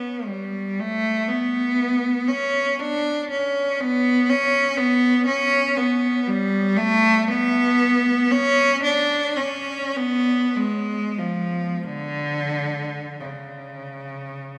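A lone bowed cello carries this mournful, meditative classical fragment, its rich, focused tone shaded with vibrato and moving between C#3 and D4. The piece unfolds freely in 3/4, with a rubato feel drifting between roughly 43 and 63 BPM, so the pulse breathes rather than marches. The single player sits up front yet sounds faintly distant, wrapped in a cathedral reverb whose 4.4-second tail lets each phrase hang in the air. Tuned to A4 = 439 Hz, the cello plays alone from 0.0 to 14.6 seconds in this short passage cut from a longer work, leaving an expressive, contemplative impression.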